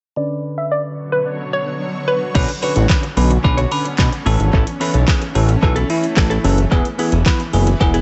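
Bittersweet yet energetic, this dance-pop excerpt moves at 110 BPM in a straight 4/4, sitting in B dorian over chords of Bmadd9, A and E. It opens with a filter sweep as a hollow, bouncy square-wave pluck carries a short melody up front, colored by chorus, tape echo and sidechain pumping, while a bell-like tine electric piano with phaser supplies bright, clean accompaniment. A shimmering, ethereal pad with octave-up shimmer and built-in reverb fades in at 0.9 seconds to hold sustained chords in the background. The pluck has dropped out by the time a direct-recorded clean electric guitar, picked, compressed and scooped with subtle chorus, slips in at 2.3 seconds with a riff in the background. At 2.4 seconds the full groove arrives: a fat, detuned sawtooth analog bass pumps up front alongside a smooth electronic R&B drum kit with soft kick, fat snare, metallic hats, handclaps and crash, its sound re-recorded in a large room and touched with tape echo. 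The mix is echo-heavy with light reverb and a rounded top end.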